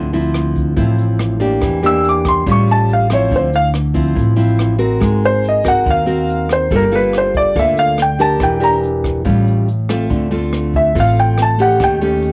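A dry, intimate home cassette recording of a melancholic bossa nova excerpt, with a full-bodied fingerpicked nylon-string guitar up front, a woody, growly pizzicato upright bass with transformer saturation, and a dark, brushed jazz kit with a boomy kick and taped, rolled-off top, before a soft, mellow felt-muted upright piano enters at 1.9 seconds to carry the melody close and up front over shifting jazz chords.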